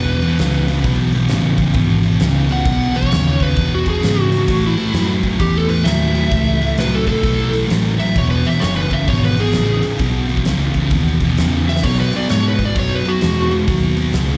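This live club recording comes through the venue's PA with a light club reverb, catching a raunchy, swaggering stretch of blues rock and southern rock that is cut from a longer piece, riding a swung 4/4 groove over a simple E, A, E, B progression. Up front, a thick, double-tracked fuzz guitar grinds out the low riff with bright, distorted bite and a slapback echo. Over it, a dark, overdriven slide guitar carries the melody as a solo, its fingered slide lines dressed in plate reverb, slapback and tape echo until it drops out at 13.5 seconds. A vintage foam-muted electric bass holds the bottom with a round, punchy tone, while a huge arena drum kit with a fat snare, punchy kick and bright cymbals drives the hi-hat and crashes. The drums throw in a fill at 11.6 seconds, just before the progression turns to B.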